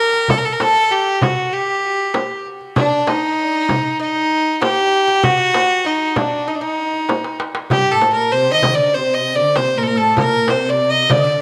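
A straight 4/4 pulse at 97 BPM runs through this melancholic, soulful Turkish makam ensemble piece, tuned to A4 = 438 Hz and cut from a longer work. A crisp, compressed darbuka with a metal shell and hard hands shares the groove with a small, close and dry frame drum played with soft hands, and a drum fill arrives at 7.1 seconds. Up front, a single bowed fiddle carries the melody with an intense, clear tone, light vibrato and a touch of tape echo, reaching a microtonally raised Eb5. Behind it, a bright, woody fretless oud with double strings, plucked with a plectrum, traces a second line in the same register. At 7.7 seconds a lush symphonic cello section enters low in the range with a dark, expressive sound, soft attack and smooth top, adding depth beneath the ensemble. The whole group sits in a moderate echo-chamber reverb with small-room ambience.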